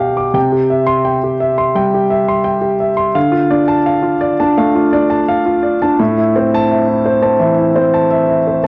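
Cassette tape coloring and a light reverb give this short home recording an intimate, close-up quality. It is a fragment of a longer neoclassical minimalist piano piece, melancholic in mood and played with a loose, rubato feel in 4/4. A solo concert grand carries everything alone, sitting up front with a warm, natural tone, deep bass and long sustain, while the noise of its action stays audible. The harmony moves from C at 0.3 seconds to D minor at 3.2 seconds and settles on A minor at 6.0 seconds, with the playing ranging from A2 up to D6.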